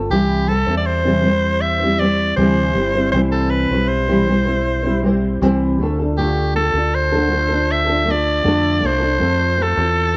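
An easy-going, carefree acoustic pop excerpt in a straight 4/4 feel, cut from a longer piece, with a double-tracked, full-bodied nylon-string guitar that is thumb-plucked, complete with finger squeak, and a round, punchy fingered electric bass sitting beneath it from the start. A raspy, forceful soprano saxophone carries the melody up front from 0.1 s with bright pop-style vibrato and a gritty edge, while the harmony moves from C to Dm at 5.8 s and F at 9.2 s. Moderate spring reverb and small room ambience surround the parts.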